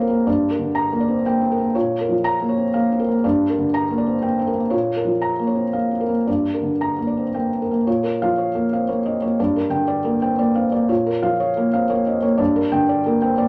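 Intimate and reflective, this short neoclassical minimalist piece is taken from a longer work and unfolds in a gentle triple metre with a rubato feel. A felt-muted upright piano plays alone throughout, its tone soft and mellow, sitting up front with a natural, close presence. The harmony rocks steadily between G minor and B-flat minor, the two chords alternating every second and a half or so. The same passage is heard twice, the repeat beginning at 7.9 seconds, which gives the music a patient, circling quality. A moderate reverb from a large studio adds a gentle sense of space around the hushed instrument, lingering for about 1.2 seconds.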